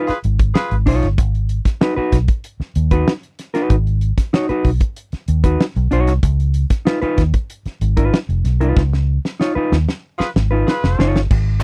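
A dry, close 1970s-style studio sound frames this sly, driving funk cut at 95 BPM, where a warm soul drum kit with a fat snare and tight kick, a round, foam-muted vintage bass and a dark, clean electric guitar ride C#9 and G#m7 chords, while a clear horn section with light vibrato punctuates band accents at 0.1 and 10.2 seconds over a closing drum fill.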